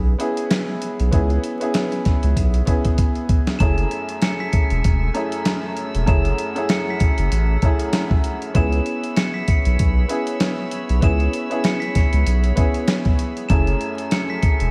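A gritty, sampler-style drum kit sits up front in this tough, reflective boom-bap hip-hop excerpt, its thumpy kick and medium-tuned snare sounding compressed and tape-warm, as if re-recorded in a large room, with a drum fill from 2.4 to 3.6 seconds. Beside it, a deep, thick saturated sub bass with a fast attack holds down the low end at 97 BPM in F# minor, swung on the sixteenths. A clear upright piano, woody, worn and slightly detuned with long sustain, carries the accompaniment through a cassette-tape filter over C#m7 and F#m9 chords. At 3.6 seconds, a metallic, bell-like glockenspiel struck with hard plastic mallets brings in the melody, ringing high with tape echo in a boxy small room. A distant, floating string section with a soft bowed attack enters at the same moment in the background. The whole mix is dreamy and soaked in lush hall reverb, with vinyl crackle underneath.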